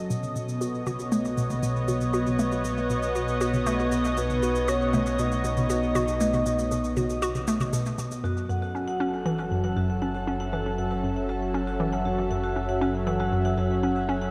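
Soaked in a lush hall reverb, this dreamy, hypnotic stretch of sequencer-driven ambient space music spreads a thick, full-bodied, up-front unison pad over a mellow, evolving analog drone bass and a hollow, bouncy, detuned square pluck riff, with a filter sweep and tape-warm electronic cabasa and toms through the first 8.2 seconds, a round, dark octave-layered synth lead singing briefly from 4.2 seconds, and a bright, airy vibraphone ringing out arpeggios through the shimmering reverb from 8.2 seconds onward.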